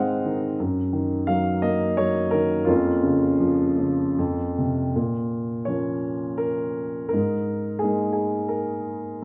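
A baby grand piano opens this short, brooding classical fragment cut from a longer piece, playing alone in a lyrical, rubato style in three. Its tone is dark and mellow, with a vintage character and long sustain, and it sits up front in a moderate recital hall reverb. The mood is moody and bittersweet, with the harmony moving through Ab, Ebm/Gb and Bbm/F in the opening passage. A new passage begins at 5.0 s, settling on Bbm before turning to Absus2 at 7.1 s. The playing spans from F2 up to Gb5, and the fragment ends at 9.2 s.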